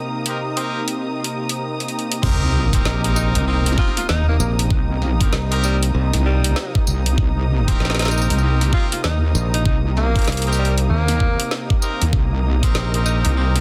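A swung 16th-note groove at 97 BPM in 4/4 drives this gritty, swaggering glitch hop cut in C minor, taken from a longer piece and sitting on a Cm7 chord. It opens with a lush, dark bowed string section and a warbling vintage analog pad with chorus, both in the background, while brilliant horn stabs with 12-bit sampler grit and dub echo arrive alongside an overdriven drum kit of woody snare, bright hats, crash cymbal and tambourine. At 2.2 seconds the drop lands: a knocking, up-front electronic kick and a heavy, detuned sawtooth wobble bass with saturation and chorus surge in, marked by a very quiet sub drop, and a growly fingered electric bass follows soon after. From 3.2 seconds a clear tenor saxophone carries the melody with light vibrato, a smooth top and dub echo. Sidechain pumping makes the pad, strings and horns breathe, all under light digital reverb in a dense, heavily limited modern master.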